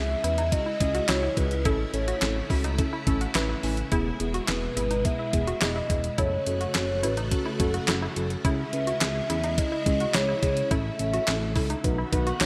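An up-front, thumpy 12-bit drum machine with a fat snare, handclaps, hi-hat and gated reverb drives this upbeat, bright synth-pop excerpt, where a hollow, woody clarinet-like lead with vibrato carries the melody over muted, warbling felt-like keys that add a short fill at 3.1 s, shimmering string-machine violins holding slow-attack chords, a smooth, dark synth bass and round analog pluck arpeggios, the whole mix set in a bright 1980s-style digital production with plate reverb.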